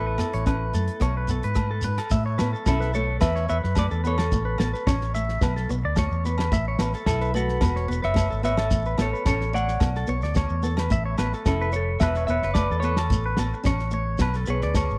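A straight 4/4 groove at 109 BPM drives this joyful, danceable highlife guitar band excerpt in A major, cut from a longer piece. A damped 1970s drum kit, with its fat snare, tight kick, hi-hat and rim click, enters at 0.2 seconds alongside ringing agogo bells set in the background and a grainy, mellow shekere. Underneath, a vintage foam-muted fingered electric bass sits up front with a dark, round, amped tone. Also up front, a semi-hollow electric guitar carries the melody with a clean, hollow-body sound and spring reverb, while a bright, twangy, compressed electric guitar picks arpeggios through spring reverb and slapback echo, and a small fingerpicked nylon-string guitar fills in the accompaniment. The harmony cycles through chords such as Aadd9, Esus2 and Bm7, and the whole has the dry, close feel of a 1970s studio in a small room.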